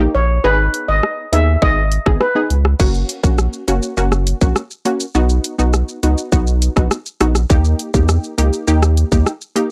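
Sultry and bouncy, this dancehall excerpt moves at 102 BPM in a straight 4/4, cut from a longer piece and heard through a dry, gritty sound with cassette tape grain and transformer saturation. A punchy chord stab carries the harmony from the very start, its detuned sawtooth and pulse-wave tone warbling with a vintage chorus and a quick filter pluck that decays after each hit, moving from G#m to F#, B and D#. Underneath, a deep, thick saturated sub bass with a triangle core and a fast attack sustains from the opening until 9.2 seconds. A metallic, shimmering steel pan played with medium rubber sticks sings an airy lead through analog delay, heard only briefly before it stops at 2.6 seconds. An electronic island pop drum kit enters at 0.7 seconds with a tight kick, dark hi-hats, rim clicks, shaker and crash cymbal, sitting up front alongside the other parts in a close, dry room.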